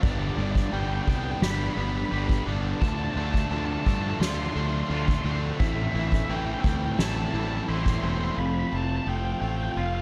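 A brooding, melancholic slice of post-rock opens at 86 BPM in a straight 4/4, with drums, bass, several guitars and a lead line all sounding from the first moment. The lead guitar, pushed through a small cranked amp with overdrive and digital delay, carries a lo-fi melody in a high register. Beneath it sit a biting overdriven guitar riff, a bright semi-hollow guitar riff and a twangy, compressed clean guitar whose arpeggios are echoed by digital delay. A growly, punchy fuzz bass sits up front, while a soft-mallet drum kit with a boomy kick, fat snare and dark cymbals stays in the background. A very quiet, blurred granular pad drifts in at 0.5 seconds, the drums fall away at 8.0 seconds, and the semi-hollow guitar stops at 8.4 seconds. The A minor harmony moves from G through Dm7 and Am7 to F, in a dark, close-sounding small room.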